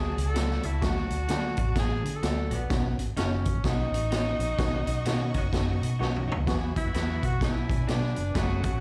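Uptempo 1960s-style soul with a swung, danceable lilt, heard as a live club gig through the venue's PA, where a breathy tenor saxophone with scooped notes, vibrato and slapback echo carries the melody and takes a solo from 6.5 s. Beneath it, a punchy, gritty garage drum kit sits up front, and a dark, foam-muted fingered electric bass rounds out the low end. In the background sit a barky, lightly overdriven electric piano with fast tremolo, a slightly broken-up lo-fi electric guitar playing stabs, a lush, intense violin section, and a tight vintage horn section with light vibrato that joins at 5.0 s, during a band accent that closes with a drum fill before the solo.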